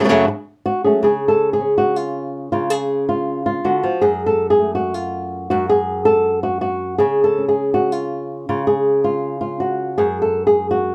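Fiery and passionate, this short flamenco piece moves at 161 BPM in a straight 4/4, cut from a longer work. A lone flamenco guitar carries everything from 0.0 to 10.9 seconds, sitting up front with an acoustic, boxy tone and thumb-plucked notes spanning F#2 to A4. Finger squeak on the strings adds a close, human texture to the playing. The harmony opens on F#madd9, moves to C# at 1.0 seconds, returns to F#madd9, and then drops its chords for the final stretch. Light reverb and a dark, warm production wrap the guitar in a shadowy, intimate sound.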